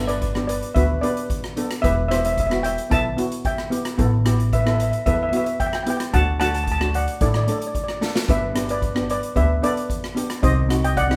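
A moderately reverberant studio sound frames this bouncy, carefree calypso excerpt in G major at 112 BPM, where an up-front lead steel pan, dark and smooth under hard rubber sticks, carries the shimmering metallic melody while a double-seconds pan struck with medium rubber sticks adds an airy accompaniment underneath. A woody, thumpy upright bass on gut strings plays pizzicato below, and a street-band drum kit, entering at 0.1 s, brings a boomy kick, medium-tuned snare, hi-hat and rim clicks in a big, roomy, polished sound, with a drum fill at 8.0 s. The harmony moves from G through Em, Asus2 and D before returning to G and settling on Cmadd9.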